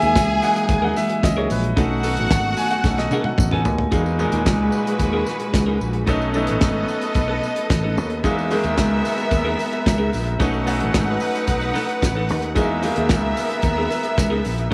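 A straight 4/4 disco groove at 111 BPM drives this glamorous excerpt, with a dry, up-front 70s kit (fat snare, tight kick, hi-hat and toms) and a round, punchy fingered bass under a jingly tambourine in the background, all cycling between Emaj9#11 and B7. A clear grand piano with long sustain takes a solo over a soft, flute-like tonewheel organ with fast rotary speaker until 3.9 seconds, when the organ drops out after a drum fill starting at 2.8 seconds. Throughout, a lush, bowed string section with vibrato carries the second line up front, while a dark, compressed clean electric guitar with spring reverb sits low in the mix, all inside a small room ambience.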